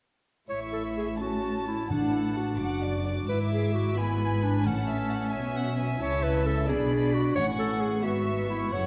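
From 0.5 s, a spirited, cheerful classical-period orchestral movement in A major unfolds in a rubato 6/8 at 87 BPM, with intimate sul tasto violin sections carrying a smooth-topped melody and a soft-edged counter-line, a clear, up-front clarinet weaving its own second line, dark violas in accompaniment, woody cellos and warm double basses on the bass, and very quiet calf-headed timpani sounding A2 at 1.9 s and again from 4.7 s, the ensemble set in a wet scoring-stage reverb.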